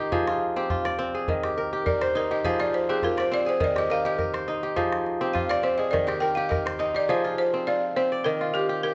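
A straight 4/4 pulse at 103 BPM carries this flowing, reflective slice of West African string and xylophone music in F dorian, cut from a longer piece, with the harmony rocking between Fm and Eb. A woody, buzzing balafon struck with hard rubber mallets takes a solo through the first 7.1 seconds, its dark tone touched with tape echo, while a bright, ringing kora sits up front with crisp fingerpicked arpeggios. A small, close calabash adds percussion until 6.9 seconds, all heard together in a large studio room with moderate reverb, as if the band were playing live.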